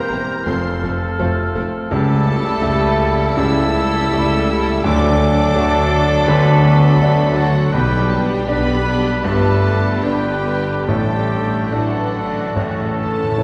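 Romantic classical music for piano and orchestra in D major, passionate and lyrical, moving with rubato at roughly 69-85 BPM, as an intimate, up-front grand piano with audible action noise carries the melody alongside a dark, woody violin section, while a rich second violin section, pure flute ensemble, clear oboe and bright clarinet weave quiet second lines, a mellow bassoon and dark violas accompany, dark French horns and a vintage-toned trombone section sustain chords under mellow trumpet stabs, tuba, smooth cellos and double basses hold the bass, and timpani with calf heads enter at 12.6 seconds, all set in a wet scoring-stage reverb heard from further back.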